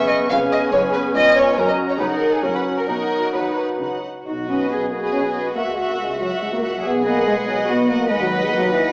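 A quick 3/4 at 140 BPM, shaped with rubato, drives this graceful, spirited classical-period movement in B major, cut from a longer piece. Two violin sections play sul tasto: a floating symphonic section carries the melody over an intimate, up-front chamber section on a second line. A warm clarinet and a distant, dark bassoon sound alongside woody violas and warm cellos and double basses until the winds stop at 4.0 seconds, and at 4.3 seconds a mellow, tight French horn section enters with sustained chords, all within a wet recital-hall reverb colored by worn, warbling cassette tape with pitch drift and a small-speaker sound.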